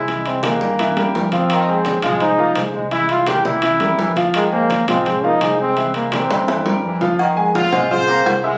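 A bright, up-front solo trombone carries the melody of this driving, danceable salsa excerpt in F minor at 169 BPM, backed by a mellow, distant trombone section, an intimate grand piano with audible action noise and long sustain, and a round, dark fingered electric bass, while soft-handed, low-tuned congas sit in the background and ringing timbales and agogo bells sound close and dry. The harmony swings between C7 and Fm7, and after a drum fill from 6.3 s, a brilliant, punchy horn section takes over the melody at 7.6 s. Plate reverb gives the lead horns a sheen, and the whole thing is captured on a phone in the room with moderate studio ambience.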